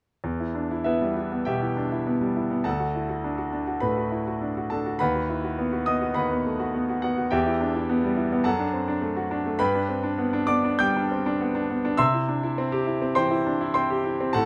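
A rubato pulse around 102 BPM in 4/4 drives this agitated, passionate classical virtuoso piano study in E minor, heard as a short cut from a longer piece. A bright concert grand plays alone from 0.2 to 14.5 seconds, spanning D2 to G6 with a brilliant, up-front tone and deep bass, set in light reverb. The harmony moves from Em through D and B/D# back to Em, then on to D/F#, G and C.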